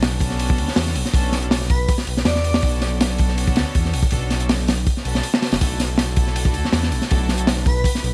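A crunchy, saturated breakbeat kit with a punchy kick and high-tuned snare sits up front in this dark, raw drum and bass and jungle excerpt, over a deep, rumbling detuned saw bass and close, bowed chamber strings holding sustained gut-string chords, while an airy, dreamy lead drifts in at 1.7 seconds and again near 7.7 seconds through chorus, phaser and dub echo, all wrapped in small-room ambience and vinyl crackle.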